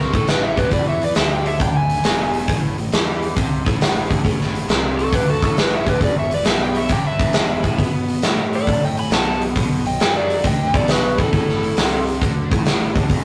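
Blues rock with a southern rock swagger, this short, raunchy cut from a longer piece rolls along on a swung 4/4 feel, led by a dark, overdriven slide guitar melody with a nasal, parked-wah lead guitar tucked in the background as a second line. Underneath, a bright, scooped, double-tracked electric guitar riff and a round, fuzzed-out fingered bass dig in, while a big, punchy acoustic drum kit sits up front with a medium-tuned snare, hi-hat and a rolled-off top, entering at 0.1 seconds. The rough rehearsal-room recording adds tube saturation and a small room's moderate reverb, giving the whole band a gritty, live-in-the-room swagger.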